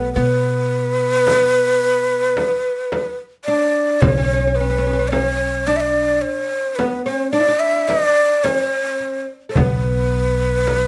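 Arabic maqam ensemble in a hypnotic, longing 10/8, led by an up-front, breathy ney with vibrato and a slightly unsteady tone over a bright, woody oud second line on double strings and a warm, up-front pizzicato upright bass, with a crisp metal-shell darbuka in the background and a deep frame drum both entering at 1.3 seconds, all in a moderate studio reverb.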